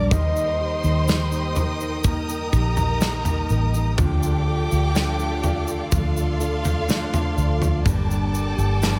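A straight 4/4 groove from a punchy, acoustic studio drum kit, with kick, snare and toms in a pumping room, enters at 0.1 seconds alongside a grainy egg shaker in the background, as a round, foam-muted electric bass sits up front in this melancholic, longing pop ballad cut from a longer piece. A soft, octave-layered synth lead with chorus, delay and vibrato sounds only in the opening second. A fingerpicked dreadnought guitar plays full-bodied arpeggios, a worn, slightly out-of-tune electric piano adds lightly overdriven accompaniment in the background, and a dark, bowed violin section carries an expressive second line over a lush, distant string ensemble holding sustained chords, all through light small-room reverb as the harmony moves from Eb to Dm to Gm.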